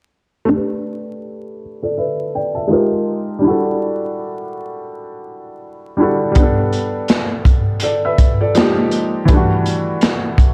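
A soft, felt-muted upright piano with audible action noise, colored by cassette tape, a low-pass filter and a filter sweep, moves through A9sus4, Fm11 and Em11 chords in this reflective, nostalgic lo-fi hip hop excerpt, joined at 6.4 s by a gritty, saturated breakbeat kit of tight kick, snare and hi-hat with a rolled-off top and a gentle swing, the whole mix sitting in a small, lightly reverberant room with a dark, warm production and vinyl crackle.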